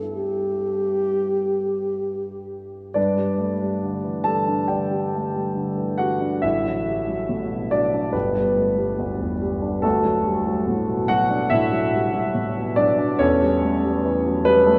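A slow, rubato pulse at 70 BPM in 4/4 gives this romantic classical duo for alto saxophone and grand piano a tender, unhurried feel in G major. The grand piano is clear and present, sitting up front with long sustain. It carries the accompaniment across the whole 14.8 seconds, ranging from G1 to A5. The mellow alto saxophone takes the melody only briefly, from 0.1 to 2.5 s, sounding a G4 with classical vibrato, also placed up front. The harmony moves from G through D/A and back to G, then to D, and settles on A7/E near the end. A deep cathedral reverb from a church or concert hall setting wraps the duo in a long, resonant tail, and the passage is cut from a longer piece.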